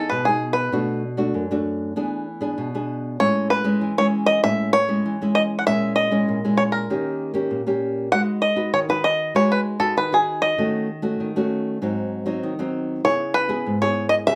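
A twangy, percussive bluegrass banjo, played with fingerpicks and placed up front, carries the melody from the first moment over a small, fingerpicked nylon-string guitar accompaniment in this festive, sunny samba at 97 BPM, with the two acoustic instruments moving through a progression from a rootless Emaj7 to C#m7 in a moderate studio reverb across this 14.4-second section cut from a longer piece.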